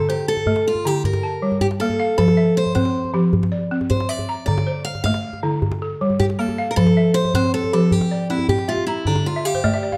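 Hypnotic and warm, this West African string and xylophone piece moves at 105 BPM in a straight 12/8 in F major. A buzzing, woody balafon, played with rubber mallets and sitting up front, spins smooth arpeggios beneath a bright picked steel-string acoustic guitar melody, while a tight, cracking djembe played with soft hands joins at 0.2 s. The parts cycle through Gm, F, C and Dm in a moderate recital-hall reverb with a dark production, and a balafon fill closes the passage at 9.3 s before it cuts off mid-piece.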